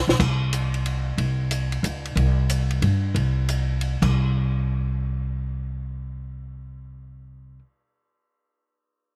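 A drum fill on a compact cocktail kit opens this short cut from a longer modal jazz piece at 0.0 seconds, with the upright bass entering at the same moment. The feel is intense and searching, a brisk 182 BPM in 3/4 with a swung eighth-note lilt. The pizzicato bass sits up front, with steel strings and a woody, thumpy tone in a low register. The drums stay further back, an acoustic, natural-sounding kit of punchy kick, high-tuned snare, hi-hat, and dark crash and ride cymbals. At 4.1 seconds the drums drop out, and the bass carries on alone into a new section until the clip ends at 7.6 seconds. The recording was made outdoors and has a dry sound with hardly any reverb.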